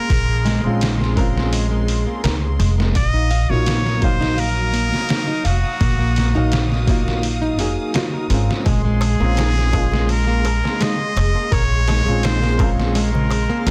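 Heard through a studio reverb and a dense, heavily limited modern master, this cinematic, dark slice of trip hop is cut from a longer piece. A trumpet with a straight mute carries the melody in a nasal, bright tone, with vibrato and scooped notes, and its tape echo trails behind it. A felt-muted upright piano adds mellow, intimate accompaniment with audible action noise, tremolo, twelve-bit sampler grit and its own tape echo. A flamenco guitar fingerpicks dark arpeggios through a delay, with finger squeak on fresh strings, while a rich string section holds bowed chords in the background. Up front, a woody pizzicato upright bass sits beneath a pitched-down, overdriven sampler-style drum kit with a thumpy kick and a muffled, compressed sound. A crisp metal-shell darbuka enters in the background at 8.7 seconds, and a reversed, granular, very quiet swelling texture drifts in at 10.3 seconds.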